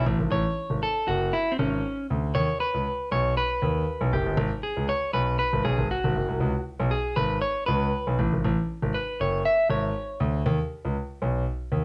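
A straight 4/4 disco groove at 118 BPM carries this glamorous, sultry excerpt, where a dark, scooped, picked clean electric guitar takes an up-front solo from 0.0 to 10.4 seconds over a deep, long-sustaining grand piano holding down the bass through 11.8 seconds, moving through Amaj7, D#7b13, G#m7, C#5 and a rootless Amaj7 before landing on Badd9, all in a light reverb.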